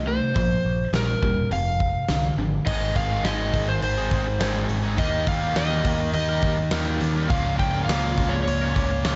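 Swaggering and gritty, this classic rock fragment sets a dark, overdriven slide guitar up front on the melody over background riffs from a bright, hollow-bodied semi-hollow guitar and a tight distorted guitar, with a growling, direct-and-amped bass underneath from the start and a big-room acoustic drum kit with fat snare and punchy kick arriving at 0.4 seconds, while a very quiet, piping tonewheel organ with key click and slow rotary speaker adds sustained chords from 7.3 seconds, in a studio reverb.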